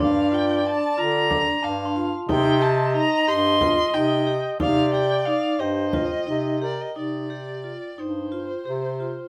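Set in a straight 7/8 at 181 eighth-note beats per minute, this urgent, hypnotic piece of contemporary chamber music in C dorian moves from Gm7 to Cm. A dark, woody bowed violin carries the melody over an up-front bass clarinet bass line with a clear, vintage tone and ringing, close-miked vibraphone arpeggios with medium motor vibrato. A flugelhorn with scooped, jazz-style notes plays a second line until 6.9 seconds, a very quiet glockenspiel with soft plastic mallets adds a bell-like shimmer, and a frame drum struck with hard hands in a live room sounds from 1.3 to 6.2 seconds, with light reverb over the whole.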